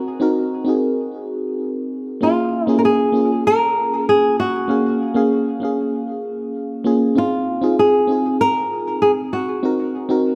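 A straight, unhurried 4/4 pulse carries this relaxed, warm chillout passage, cut from a longer piece and running about 10.3 seconds. A thumb-plucked flamenco guitar carries the melody in a narrow middle register, its acoustic tone boxy and up front, with a touch of tape echo trailing each phrase. Beneath it, a mellow FM electric piano supplies the accompaniment across a broader span, sounding soft, round and full-bodied, with a dark, vintage warble from its chorus, a faint noise layer, and fast-attack notes that decay away. The harmony drifts from Ab7 to a lush Gbmaj9, then to Ab69/C, and closes on a rootless Ab7. Both parts play throughout, set in a moderate concert-hall reverb that lends the pair a gentle sense of space.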